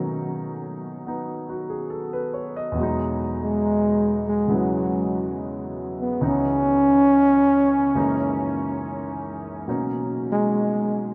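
Jazz ballad with a smoky, wistful mood, moving at an unhurried swing in four. A mellow trombone carries the melody in a close-miked, up-front solo voice, its light vibrato giving each held note a gentle shimmer. A clear grand piano supports it throughout with polished, present accompaniment that spans from deep bass notes to bright upper chords. The harmony drifts through rich extended chords, settling onto a major ninth at 9.7 seconds. A huge, wet reverb with a seven-and-a-half-second tail places the pair in a vast, echoing space, lending the short passage a lingering, dreamlike glow.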